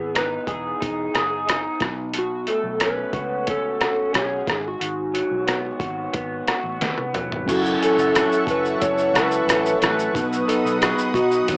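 A dark, slightly broken-up electric slide guitar carries the melody through this hazy, lonely bedroom-pop fragment at 90 BPM in F# dorian, over a picked, up-front electric guitar through a small old amp with a warbly analog chorus, a round foam-muted bass, and a muffled, pitched-down sampler-style drum kit with a thumpy kick and fat overdriven snare entering at 0.2 seconds, before a mellow tine electric piano and a lush, detuned sawtooth pad arrive at 7.5 seconds, all heard through a small room and cassette-tape haze.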